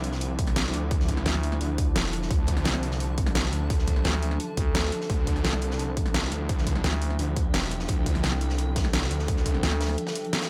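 Futuristic and mechanical, this dark technical drum and bass passage is cut from a longer piece and runs in a straight 4/4 over a sustained D minor add-nine chord. Up front, a thick, lush detuned saw bass pumps against the sidechain with chorus and tube saturation until 9.6 s, while a growling FM bass, also saturated, breaks through in short bursts, most fully between 4.0 and 7.2 s. The drums layer a punchy electronic kick entering at 0.4 s, a prominent dubstep kit with a deep snare and hi-hat re-recorded in a large room, and a very quiet, gritty breakbeat kit with a rolled-off top tucked beneath. In the background, an eerie, metallic inharmonic drone with slow attack and chorus holds sustained chords, joined by a bright, cloudy granular pad that blurs and evolves, both bathed in built-in reverb and pumping with the sidechain. A light reverb places the mix in a shared space, and a brief break near the end closes on a band accent.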